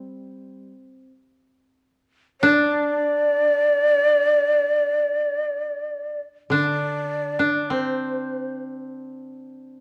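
A breathy shakuhachi with vibrato and a crisp, chiffy attack carries the melody up front from 2.4 to 8.6 seconds over two woody, fingerpicked kotos, one playing a second line and the other a softer accompaniment, in this austere, calm excerpt of Japanese traditional chamber music at a slow, rubato 51 BPM, set in a moderate recital hall reverb with a dark production.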